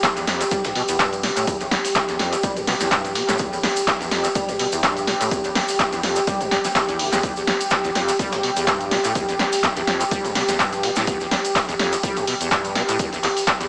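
A swung acid house groove drives this raw, gritty fragment, its sixteenths nudged into a loose shuffle, and every part runs from the first second to the last. A punchy analog drum machine sits up front with handclaps, hi-hat and a punchy snare, each wrapped in a short room and trailed by dub echo, while an electronic kick thumps beneath it and a very quiet, compressed breakbeat kit adds tape-warm hats and a medium-tuned snare. A grainy, bright tube shaker hovers in the distance of a large room, also smeared by dub echo. The liquid acid bass carries the riff, a squelchy, resonant sawtooth line with a filter sweep, fast attack and quick decay, thickened by tube saturation, subtle chorus, cassette tape grit and tape echo as it pumps against the kick. Above it, a detuned sawtooth pad holds soft-attack chords on E minor, warm and chorused and also breathing with sidechain pumping. The echo-heavy mix, set in a moderate plate reverb, has a small-speaker sound.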